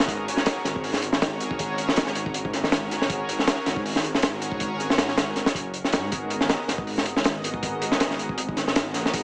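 Heard through a small speaker with light reverb, this dark, atmospheric drum and bass and jungle excerpt at 159 BPM in G# minor rides a crunchy, gritty breakbeat kit with a tight kick and high-tuned snare sitting up front, under a deep, rumbling detuned saw bass and a lush, thick unison pad bathed in chorus, moving from F#add9/G# to G#m7 at 6.1 seconds.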